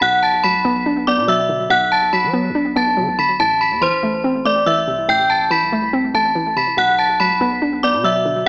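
A metallic FM bell carries the melody up front, its bright, inharmonic tone ringing high over this ominous, cold drill excerpt, thickened by chorus, a low-pass filter and analog delay. Beneath it, a hollow square pluck plays the accompaniment with a bouncy, detuned character, a noise layer and a sine sub octave, passing through its own chorus, filter sweep and analog delay. A long sustained 808-style bass sits low and mellow in the mix, its deep sine tone decaying under the other parts. At 142 BPM in 4/4 with a half-time feel, the music stays in B phrygian, moving from Bm to Am at 3.4 seconds and back to Bm at 6.8 seconds. The whole excerpt is bathed in moderate spring reverb and heavy echo, with an AM radio sound that lends it a distant, eerie quality.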